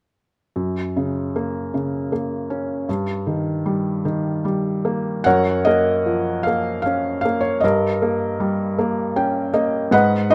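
Set in 6/8 at 52 BPM counted in dotted quarters, this calm, tender classical piece moves with a loose rubato in F# major. A single felt-muted upright piano carries everything, playing from 0.6 to 10.3 s across a span from F#2 to G5. Its tone is soft and mellow, with a thin layer of felt dulling the hammers and the mechanical noise of the action clearly audible, which lends it an intimate, up-front presence. The harmony rests on F# before shifting to D#/G, then opens into F#maj7 at 5.3 s as a new section begins, leaning toward D#7/G afterward. A brief piano fill at 8.8 s adds a small flourish near the close of this excerpt, cut from a longer piece. Close, detailed microphones and a light reverb keep the sound near and delicate.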